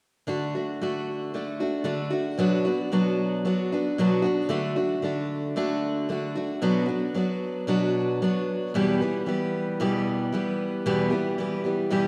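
A straight, steady four-beat pulse carries this short folk fragment, cut from a longer piece, with a nostalgic, gentle mood. A picked steel-string acoustic guitar is the only part, playing accompaniment from 0.3 seconds to 12.1 seconds. Its tone is warm and up front, with audible finger squeak and an auditorium-like character. The harmony moves between D and B minor, and after a new section begins at 4.5 seconds it reaches E minor. A wet, lush hall reverb with a 2.6-second tail surrounds the guitar. The whole take has the rough feel of a home demo on cassette tape.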